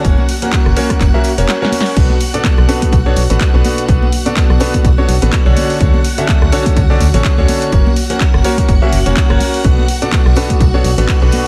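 An excerpt of bittersweet, energetic piano house in B minor at 125 BPM with a swung 16th feel opens on a bright, brilliant grand piano riff with delay, a hollow, dark organ-like FM bass and shimmering vintage string-machine violins pumping against a punchy, tape-warm electronic kick, while a house kit of snare, hats, handclaps, rim clicks and crash adds a fill as the kick drops out from 1.5 to 2.0 s, ringing tambourine and congas sit in the background, and chords move from F# through Bm7 and Dmaj7 in a dry mix.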